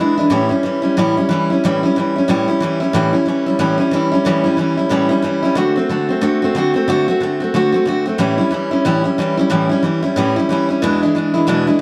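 A lone picked steel-string acoustic guitar opens this brief rock excerpt at 0.0 seconds and carries it alone to 11.8 seconds, sitting up front in the mix. The mood is rollicking and rowdy, driven by a fast 183 BPM in 4/4 with a swung eighth-note feel. In A mixolydian, the guitar works through a bluesy run of dominant chords, moving from A7 to D7, back to A7, and landing on E7 as the clip cuts away. Its dreadnought body gives the tone a full-bodied depth across a range reaching from the low E string up to F#4, and an audible finger squeak adds a raw, close-up edge. A light reverb gives the instrument a touch of space, and the tuning sits at A4 = 439 Hz.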